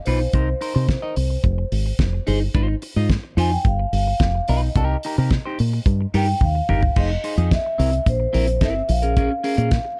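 This short excerpt from a longer disco piece in F minor opens with all four parts arriving together at 0.1 seconds, setting a sultry, glamorous mood at 109 BPM in a straight 4/4. A vibraphone played with soft mallets carries the melody in a mellow, ringing voice with its motor off, trailed by tape echo. Beneath it, a clean electric guitar adds bright, twangy picked accompaniment colored by a phaser, while a fingered electric bass sits up front with a round, punchy, foam-muted tone. A damped 70s drum kit with a fat snare, tight kick and dark cymbals keeps a dry, rolled-off feel, and a drum fill at 6.4 seconds leads into a new section at 7.0 seconds. The harmony moves through chords such as Cm7, Fm7 and G7b13 before shifting to Fm7, C7 and Bbm7, all within a dark, warm production and small room ambience.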